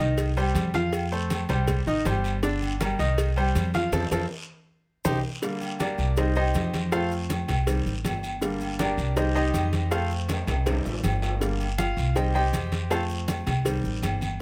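Danceable and driving, this salsa excerpt runs at 160 BPM in straight 4/4, with a bright, brilliant upright piano and a woody, dark pizzicato upright bass up front over Cm, F and Gm changes, while close, tight cowbell, ringing distant agogo bells and timbales, thick-skinned congas, raspy guiro and grainy maracas fill out the percussion, a drum fill and band accent arrive at 3.9 seconds, and the piano takes a solo from 5.4 seconds to the end in a dry, detailed sound.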